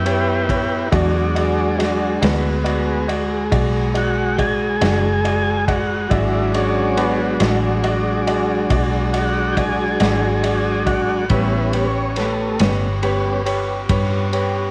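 A tonewheel organ opens this soulful, laid-back slow blues in 12/8 at 46 BPM, holding smooth sustained chords through a slow rotary speaker, up front over a dark, round, foam-muted electric bass that sits punchy beneath it in E mixolydian. A bright upright piano comes in at 0.1 seconds with brilliant, woody accompaniment, its action noise audible, alongside a muffled, lo-fi vintage drum kit of tight kick, medium-tuned snare and dark ride cymbal. A clean, compressed electric guitar joins at 0.9 seconds as the harmony moves from a rootless A9 to E9, fingered and very quiet in the mix. At 11.3 seconds the chord returns to A9 and a clear saxophone section enters in the background with ensemble vibrato and a smooth top, adding jazz-style sustained chords. The organ carries the lead throughout this short cut from a longer piece, framed by light reverb and a small room ambience.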